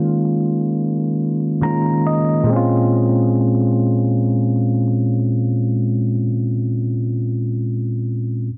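A dense, heavily limited, low-pass-filtered master with light reverb and studio ambience frames this sensual, late-night R&B excerpt in free time and Bb minor, where a bell-like, barky tine electric piano sits up front, spanning Bb2 to Bb5, playing a fill from 1.2 s under a filter sweep that runs to 2.5 s, as the harmony moves from Eb7sus4 to Bbm7.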